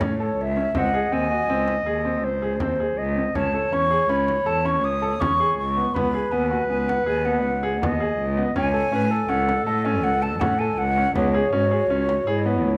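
Contemporary chamber music in an uneven 7/4 at 162 BPM, urgent yet pensive, this excerpt sets a breathy, hollow flute melody high over a smooth classical clarinet second line, while a clear baby grand piano with audible action noise and long sustain plays arpeggios. Beneath them a rich, bowed cello carries the bass up front with vibrato and portamento, and a close, dry frame drum sits in the background. The harmony moves over a C# pedal from G#/C# through Amaj7/C# and G#m7/C# before settling on C#m7 at 11.2 seconds, all within a moderate recital hall reverb.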